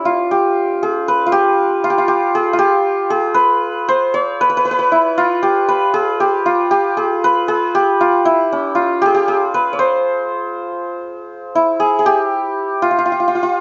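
Persian music in a festive, warm mood, this short excerpt cut from a longer piece moves at 78 BPM in a straight 6/8. A solo santur carries everything from start to finish, its bright, hammered strings shimmering and ringing up front in the mix across a range from Db4+45c to Db5+45c, with a new section arriving at 11.3 seconds. Light reverb surrounds the instrument, and nothing sounds above 7.7 kHz.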